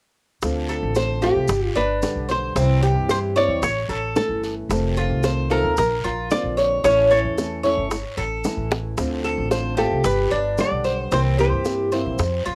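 Heard through a cassette home recording with a wet studio reverb, this nostalgic fragment of Cuban son and guajira in D minor at 112 BPM sets a bright, metallic Cuban tres arpeggiating up front from 0.7 seconds beneath a dark, clean, hollow-body archtop guitar melody entering at 1.2 seconds. Underneath are a fingerpicked flamenco guitar, a woody, thumpy upright bass on gut strings, tight high-tuned bongos, and a raspy guiro and grainy maracas tucked in the background, with a drum fill arriving at 8.7 seconds.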